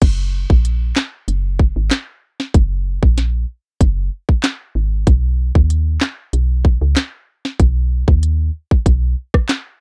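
A woody FM bass and an electronic island pop drum kit start together, setting up a summery, sunny dancehall groove at 95 BPM in straight 4/4. The drums are tight and produced, with a firm kick, a sharp snare, smooth hi-hats, handclaps, rim clicks and a crash cymbal, all sitting up front in the mix. Beneath them the bass stays low, moving between F#1 and D#2 with a soft, round tone, a fast attack and decaying notes. The bass drops out at 9.1 seconds and the drums carry on alone until 9.6 seconds. The production is dark and warm, with little reverb, and the clip is cut from a longer piece.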